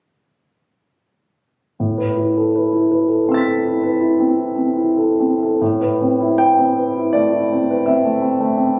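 At 1.8 seconds a clear concert grand piano opens on an A minor add9 chord, beginning this hazy, wistful fragment of a longer impressionist classical piece for solo piano in A minor, unfolding in a rubato 5/4 at roughly 68-85 BPM. Placed up front with deep bass and long sustain, the piano ranges from A2 to B6 and plays until 8.8 seconds, shifting into a new section at 5.6 seconds. The sound sits in a moderate concert hall reverb, captured on a phone in the room and further coloured by club reverb and compression.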